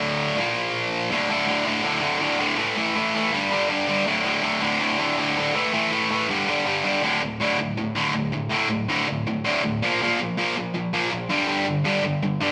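Punk at a brisk 162 BPM in straight 4/4, upbeat and rebellious: a bright, overdriven electric guitar plays alone, picked and double-tracked up front between D2 and Bb3, moving through chords like D5, A5, G5 and Bb5 as the sound rings in a stone room reverb and feels like a band playing live in one room, in a 12.5-second cut from a longer piece.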